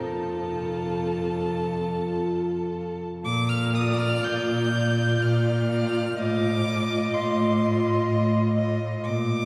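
Classical slow romantic movement for string quartet in Bb major, lyrical and serene, in rubato 3/4 at 52-64 BPM, where a rich, expressive first violin sings the high melody with vibrato and portamento over a soft-attacked, close second violin line with a warm tone, a smooth, even viola playing F4, and a focused cello bass set up front, each part bowed by one player and heard from further back in a wet cathedral reverb as the harmony moves from F to Bb at 3.2 s and to F7/A at 6.2 s.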